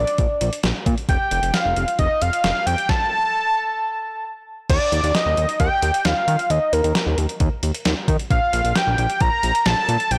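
A straight 4/4 pulse at 133 BPM drives this bright, nostalgic synth-pop excerpt, set by a sampler-style 12-bit drum machine with a thumpy kick, a medium-tuned snare, hi-hat and crash cymbal, overdriven and re-recorded in a large room. Underneath, a fat analog bass sits up front with a thick, mellow tone built from detuned sawtooth, square and triangle waves, colored by ring modulation and a filter sweep. The fat analog lead carries the melody between Bb4 and Bb5, its detuned sawtooth with a sub octave and wave-folding giving an evolving sound, with vibrato and a tape echo trailing its sustained notes. The music halts at 2.9 seconds and resumes at 4.7 seconds, when the harmony moves from Bb and F to Eb before landing on Bb5. A moderate, lush hall reverb surrounds the mix, and the whole recording is blown-out and overdriven.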